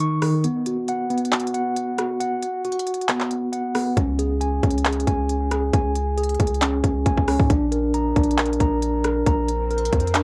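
Menacing and eerie, this trap-flavoured hip hop passage moves at 136 BPM with a half-time feel, opening on a mellow tine electric piano spinning arpeggios through a low-pass filter and analog delay over a trap kit of handclaps, crisp hi-hats, rim clicks and a hard-clipped kick coated in vintage 12-bit sampler grit. At 4.0 s a deep, sine-toned 808-style bass arrives with long, decaying notes, and a faint electronic swell appears in the background at 9.6 s. The chords move through B5, Db5 and Bb, and the dry, gritty recording keeps the piano, drums and bass close and up front.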